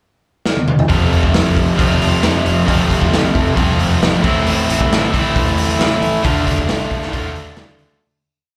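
A raw garage drum kit opens with a fill at 0.5 s, its punchy kick and medium-tuned snare sounding saturated and up front in a small, pumping room with a rolled-off top. At 0.9 s a bright, overdriven, double-tracked stack guitar enters with ringing chords and slapback echo, over a round, fuzzy electric bass driving eighth notes in the background, moving from F to A minor to D minor in a swaggering, gritty classic rock pre-chorus at 135 BPM. Heard as a live gig through the venue's PA with light club reverb, the short piece fades out from 6.2 s to its close at 8.0 s.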